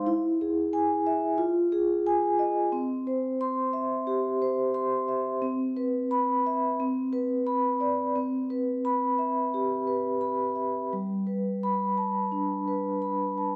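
A straight, even 4/4 pulse carries this contemporary classical piece for solo vibraphone, which is cut from a longer work and has a playful, flowing mood. The vibraphone, struck with soft mallets, plays alone for the full 13.6 seconds, ranging from G3 up to C6 with a mellow, ringing tone, a metallic edge and a medium motor vibrato, placed up front in the mix. The harmony moves from E and Fm7 through C and Cmaj7, touches Bm/C around 6.8 seconds, returns to Cmaj7 and settles on Gadd9 near 10.9 seconds. A moderate recital hall reverb surrounds the instrument, and the production as a whole sounds dark and warm. The instrument is tuned to A4 = 437 Hz.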